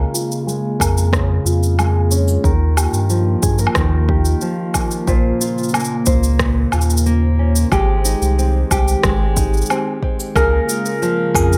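Hopeful and warm, this folktronica excerpt sets up-front, fingerpicked nylon-string guitar arpeggios, carrying finger squeak, 12-bit sampler grit, a low-pass filter sweep and digital delay, over a smooth, detuned sawtooth pad with chorus in the background, a round sine sub bass, and tape-toned electronic cabasa, woodblock, rim click and deep kick re-recorded in a large room, before a soft, felt-muted upright piano with audible action noise and delay enters at 10.4 s, the whole mix sitting in light reverb.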